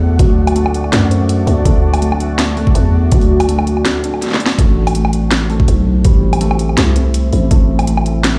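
Half-time drum and bass at 164 BPM in A dorian, heavy and spacious, where a growling, buzzy 808-style bass and an overdriven knocking kick sit up front alongside cracking snare and bright hats with woodblock, while a deep, moody pad with sampler grit and sidechain pumping holds sustained chords, a felt-muted upright piano with audible action noise plays delayed arpeggios, a very quiet flickering grainy texture drops away at 4.6 seconds, and a drum fill at 4.2 seconds leads the move from D to Am inside a large, reverberant bare room.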